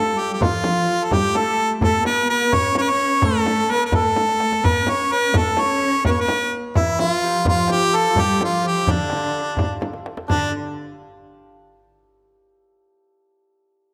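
A close, detailed recording on a moderate scoring stage with a faint mains hum carries this soulful, longing Persian modal ensemble excerpt in 6/8 at 85 BPM, where a clear harmonica with classical vibrato sings the melody up front over a rich, lush bowed cello section and a bright, shimmering santur ringing in the background. A deep, dry tombak and a small frame drum played with soft hands keep the pulse, with drum fills at 4.2 and 9.8 seconds, and the santur rings on alone from 10.5 seconds until 11.8 seconds.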